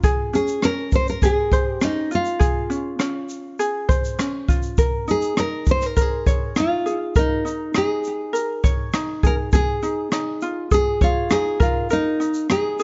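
A fingerpicked ukulele and a jazz brush drum kit open this short, carefree acoustic pop passage at 101 BPM in a straight 4/4, the ukulele mellow and light while the kit sounds dark and smooth, its boomy kick joined by rim clicks and shaker. A nylon-string guitar enters at 0.4 seconds to carry the melody, fingerpicked with a full-bodied, deep classical tone, audible finger squeak and tape echo. All three parts sit up front in a studio reverb with a soft, rolled-off top end. The harmony moves from Dbmaj7 to Eb7sus4, then shifts at 9.5 seconds into a new section built on Dbadd9 and Ebsus4. The overall mood is sunny and carefree, a fragment lifted from a longer piece.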